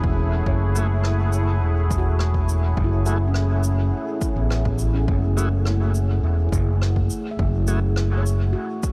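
A straight 4/4 pulse from a punchy, overdriven electronic kick and an up-front, amped fingered electric bass anchors this spacious, meditative ambient dub fragment, where a deep, detuned sawtooth pad with chorus and long release holds a single F#m9 chord, a soft, ringing handpan plays echoing arpeggios in the background, a thick tonewheel organ with slow rotary speaker drops in dub-echoed stabs from 0.8 seconds, and a small-room cabasa and rim click scatter delayed accents, all wrapped in tape saturation and light studio reverb.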